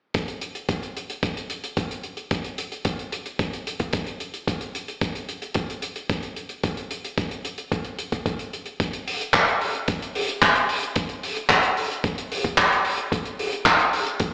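Heard as if through a big sound system in a bare stone room with an AM-radio tone, this cosmic, groovy nu-disco excerpt runs at 111 BPM in a straight 4/4. A damped 70s drum kit with handclaps and hi-hat sits up front with a dry, acoustic character and a rolled-off top. Alongside it, an overdriven electronic kick drum adds a gritty, thumpy, compressed punch, with both parts playing together from 0.1 to 14.3 seconds.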